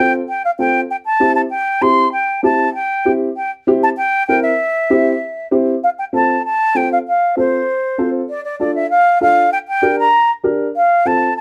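A straight, even 4/4 pulse carries this brisk, sunny Latin passage, cut from a longer piece and lasting a little over 11 seconds. A concert flute takes the melody with an airy, soft-attacked straight tone, sitting up front yet with a faintly distant quality. An upright piano plays the accompaniment beneath it with a dark, woody and boxy tone. The harmony moves from Fadd9 to C, then at 5.8 seconds a second section begins with F, passing through Dm and Gm before settling back on F. Close, detailed miking and light reverb give the joyful duo an intimate, clear presence.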